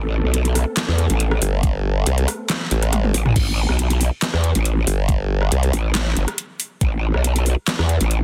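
This heavy wobble dubstep clip hits with a half-time, aggressive drop feel from its first moment. A growling, distorted growl bass sits up front throughout, bright and compressed with chorus and overdrive, its formant-filtered wobble snarling low in the register. Behind it, huge detuned supersaw chords shimmer through a phaser with sidechain pumping and a low-pass filter, sitting in the background until they stop at 3.3 s. A saturated, sawtooth formant-sweep wobble bass joins at 1.4 s, while an electronic kick with a knocking punch arrives at 1.6 s. The up-front drum kit brings a deep snare, metallic hats, handclaps, rim clicks, toms and crash, with a fill leading into the second drop, and the dense, heavily limited master keeps the sound dry and tight.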